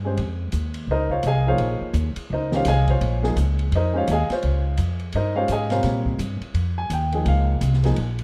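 Piano and upright bass open together on a Bbm11 chord in this short modal jazz excerpt in Bb dorian, an intense, spiritual passage swinging at 169 BPM in 4/4. The drum kit joins at 0.2 seconds, its ride cymbal, hi-hat, snare and kick sitting back in the balance behind the other two parts. The baby grand, up front and natural in tone, carries the accompaniment across a middle range, while the pizzicato bass on steel strings sounds woody and close. The kit has a dark, smooth character, with shadowy cymbals, a high-tuned snare, a boomy kick and a rolled-off top. A light small-room reverb surrounds the trio in a rough home-demo mix, and the piano drops out at 8.0 seconds as bass and drums carry on to the cut.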